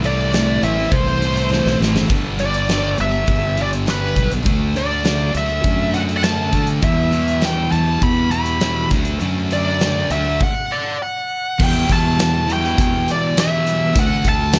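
A bluesy, up-front lead guitar colored by wah and distortion carries the melody through this driving, confident classic rock excerpt, over a sludgy double-tracked overdriven riff guitar, a growly fuzz bass, a huge arena drum kit with a fat snare, punchy kick and bright cymbals that fills at 1.5 seconds, and a very quiet jumbo steel-string acoustic with finger squeak, all under light reverb, with a stop at 10.4 seconds before a new section moves between Em and D from 11.6 seconds.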